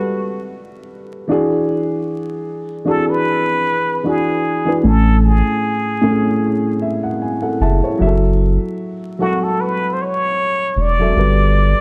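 A plunger-muted trumpet carries the melody with a breathy, wah-wah tone, scooped notes and light vibrato, its jazz-style solo softened by a low-pass filter and trailed by analog delay. This reflective, nostalgic lo-fi hip hop excerpt in F# minor moves at 76 BPM with a swung 16th-note feel, while a dark, woody upright piano with a cassette-tape texture moves through chords such as Gmaj9, Amaj7 and F#m7. After an opening break, a deep, thick, saturated sub bass enters at 4.8 seconds, sitting up front in an echo-heavy mix with light reverb and vinyl crackle.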